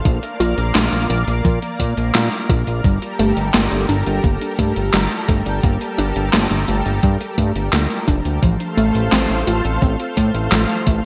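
Synthwave at 86 BPM in G minor, cinematic and driving and cut from a longer piece, where a silky, wave-folded string pad with ensemble chorus and sidechain pumping holds sustained chords over a fat, detuned sawtooth bass with a filter sweep, while a warbling, lo-fi pluck with cassette-tape coloring, chorus and delay plays mellow arpeggios in the background, and a thumpy, overdriven electronic kick pairs with an up-front 80s drum machine of handclaps, hi-hat and a gated-reverb snare, set in a moderate plate reverb with bright 1980s-style digital production as the harmony moves from Bb to Gmadd9 at 2.8 seconds and F/A at 8.4 seconds.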